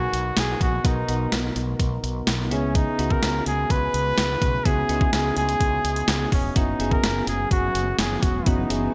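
A warm flugelhorn carries the romantic, nostalgic melody up front, with vibrato and a touch of delay, over soft electric-piano-like synth keys that are round and gentle with chorus and tremolo. A mellow, round fretless bass and a clean 12-bit drum machine with a thumpy kick, medium-tuned snare, hi-hat and gated reverb drive this 1980s-style pop cut in B major at 126 BPM, moving through Bmaj7, C#m7 and F#7sus4. At 7.4 seconds a shimmering, ethereal pad enters in the background, all set in a lush hall reverb with bright digital production.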